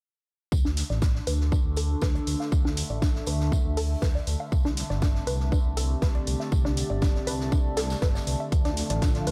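Melodic techno at 120 BPM in D minor, dark and melancholic, cut from a longer piece, where a punchy up-front electronic kick and overdriven electronic hi-hat sit over a rumbling, saturated detuned saw bass with sidechain pumping, joined by a resonant ring-modulated drone with moving overtones, a lo-fi, warbling tape-like pad, a tight sequenced synth arpeggio with chorus, digital delay and a filter sweep across the whole passage, a faint acoustic big-band kit of hi-hat, snare and tambourine, and a lush unison pad that arrives only at 8.8 seconds as the chords move from D5 through C to Dm under light studio reverb.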